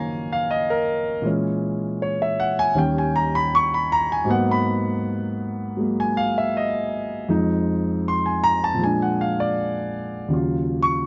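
A dry, close 1970s-style studio sound with light reverb frames a dark, mellow concert grand piano played up front, carrying this late-night solo jazz excerpt alone at a swinging 79 BPM in Eb minor, its deep bass anchoring chords that move from Gbmaj7 through Abm9 and Bb7 to settle on Ebm9 at 10.3 seconds.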